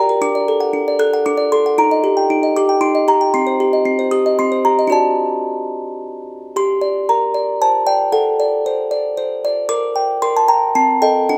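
A classical lullaby in G minor at 114 BPM in a straight 3/4, this fragile, wistful fragment of a longer piece features a solo music box, delicate and tinkling with a plucked, small-box character, sitting up front in close, detailed miking and ringing through a moderate recital-hall reverb as its melody spans C4 to F#6 over harmonies that move from D through Eb and Cm before a second passage begins at 6.6 seconds on Gm and closes on Am7b5/C.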